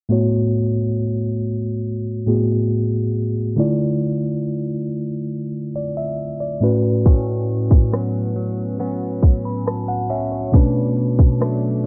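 Romantic and smooth, this contemporary R&B excerpt at 69 BPM in A major opens on a worn, slightly out-of-tune tine electric piano played up front through A69, Dmadd9 and Bm7 chords, joined at 7.1 seconds by a clean, picked, compressed electric guitar tracing arpeggios through analog chorus and delay, and by an electronic trap kit of hard-clipped kick, crisp hi-hat and rim click, all set in a dark, dry, low-pass-filtered mix with a filter sweep running throughout.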